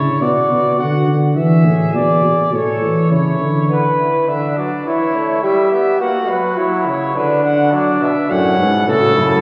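Driving and solemn, this imitative brass canzona in the classical style moves at 104 BPM in 4/4, a passage cut from a longer piece that settles into B minor at 3.7 s. A mellow trumpet with light vibrato carries the melody over a warm flugelhorn second line, while a clear tuba with vibrato and a soft attack holds the bass, drops out at 3.7 s as a brilliant trombone enters with accompaniment, and returns at 8.3 s. A generous church reverb places the ensemble further back in the room, giving the trumpet, flugelhorn and trombone a distant, roomy character.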